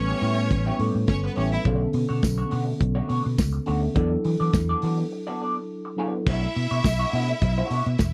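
Disco in B minor at 104 BPM, sultry and driving, this short excerpt sits in a dry, close 1970s-style studio sound with a small room around it. A muffled, lo-fi soul drum kit with a tight kick and a punchy, amped fingered bass sit up front, while a slightly broken-up electric guitar with wah and subtle chorus and a mellow tine electric piano through its built-in speakers fill out chords moving from A9 through Bm9 to E9sus4, with a jingly tambourine joining at 2.2 seconds. A bright, lush bowed string section with vibrato appears briefly at the start, then returns at 6.3 seconds after a break, as the electric piano drops out and the harmony settles back on Bm9.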